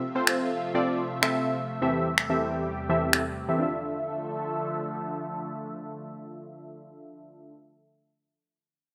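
Confident and driving, this short dance-pop excerpt moves in a straight 4/4 over Fmaj7 and Am7/E chords before settling on Dmadd9. Round, detuned analog keys built from sawtooth and square waves with a sub octave sit up front with a fast, decaying attack, chorus and a filter sweep over the first 3.6 seconds, while a lush, thick unison pad, also up front, swells in slowly, colored by chorus and phaser. Overdriven, layered electronic finger snaps punch through from 0.3 to 3.2 seconds, and the whole piece carries a bright 1980s-style digital sheen with a moderate plate reverb.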